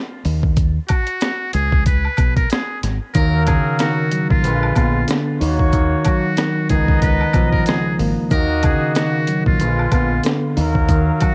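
A swung 93 BPM boom-bap groove in Eb minor rides on a gritty, compressed sampler kit with a thumpy kick and high-tuned snare, a round, punchy fingered electric bass, and maracas and woodblock tucked in the background. A buzzy, metal-muted trumpet plays a thin, jazz-style solo with light vibrato from 0.9 seconds, and at 3.1 seconds a warm trumpet section adds delayed stabs as a bright, bell-like tine electric piano moves through chords like Ebm9 and Bb7b9. The trumpets and electric piano carry a filtered cassette-tape hue, and the small-room home recording gives this dark, reflective passage from a longer piece an intimate feel.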